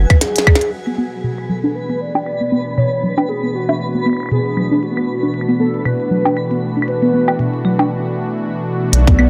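A swung 16th-note groove at 117 BPM drives this eerie, glitchy IDM excerpt in B dorian, where a tight, up-front electronic kick and a tape-warmed glitchy kit of tiny snare, clicky hats, claves and percussion blips sit in a large-room sound under a detuned, vibrato-laden lead with lush chorus and dub echo, a twinkling granular shimmer with sidechain pumping, a smooth vintage sawtooth pad and a soft, round arpeggiated pluck that both carry filter sweeps from 0.7 seconds, a break at 7.9 seconds, and a rubbery, resonant acid bass that returns at 8.9 seconds.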